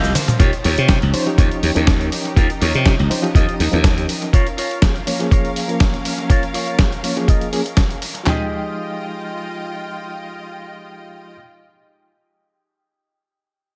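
A growly, punchy slap bass sits up front in this sensual, sleek nu-disco excerpt, dropping out at 4.1 seconds while a gritty, compressed sampler-style drum kit with a thumpy kick, handclaps and shaker carries on until about 8.4 seconds. A twangy envelope-filtered electric guitar riff with dub echo and a biting symphonic string section with sidechain pumping run throughout, joined at 0.9 seconds by a reedy electric piano with fast tremolo. A clean guitar fill, a band accent and a drum fill open the cut, and the echo-heavy mix moves through Eb9, Db6 and Fm9 chords.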